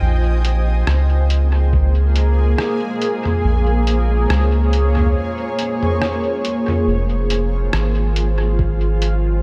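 Spacious and meditative, this ambient dub excerpt floats on a cloudy, detuned granular pad with a slow attack and lush chorus, sitting up front beside a deep, round sub bass. A muffled, tape-warm, pitched-down sampler kit of hi-hat, rim click and toms drifts through a dub echo, while a thumpy, compressed electronic kick surfaces only briefly in the background. A break arrives at 5.2 seconds, and at 6.9 seconds the harmony shifts from Bbm9 to Fm7, with a light reverb over the mix.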